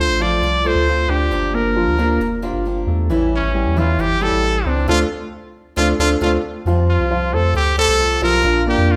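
A moderate large-studio reverb gives this short Latin excerpt the sound of a band playing live together in one room, sultry and danceable in a straight 4/4. Up front, a brilliant trumpet carries the melody in a pop-style solo, punchy and present, with vibrato and scooped notes. Beneath it, a round analog bass sits deep and forward, its fast attack and sustained, dark tone anchoring the harmony. A picked acoustic archtop guitar supplies boxy accompaniment, finger squeaks audible, while a mellow baby grand piano adds dark arpeggios. The chords move from Dm7 through Gm7 and A7 back to Dm7, where the band hits an accent from 4.9 to 6.7 seconds before the passage shifts to Fadd9 and Bb.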